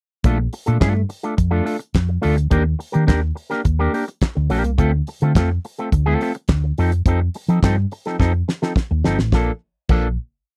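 Disco at 106 BPM in Bb major, glamorous and danceable, with a damped 70s drum kit driving a four-on-the-floor beat with open hats on the off-beats, a fat snare layered with handclaps, and a tight kick, while a hollow-body short-scale fingered electric bass plays a round, dark, syncopated disco line. An electric guitar with an envelope filter adds choppy, twangy sixteenth-note picking over a Bbmaj7, Ebmaj7, Dm7, F7 progression. A drum fill at 8.2 seconds leads to a closing Bbmaj7 chord at 9.3 seconds, all in a dry, close 1970s-style studio sound.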